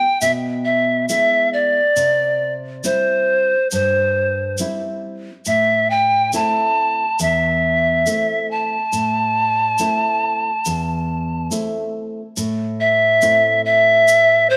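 A straight, unhurried four-beat pulse gradually speeds up across this melancholic, earthy Andean folk excerpt, cut from a longer piece. A grainy tube shaker joins at 0.2 s and sits low in the mix, its bright, acoustic rattle carrying a live-room feel. Beneath it, a full-bodied nylon-string guitar plays thumb-plucked accompaniment with a deep classical tone, moving from E to C and settling on Am at 5.5 s. Up front, a close-miked pan flute carries the melody with a pure, woody sound, crisp attack, chiff and vibrato. A new section arrives at 12.4 s, and a moderate echo-chamber reverb with small-room ambience gives the ensemble an intimate space.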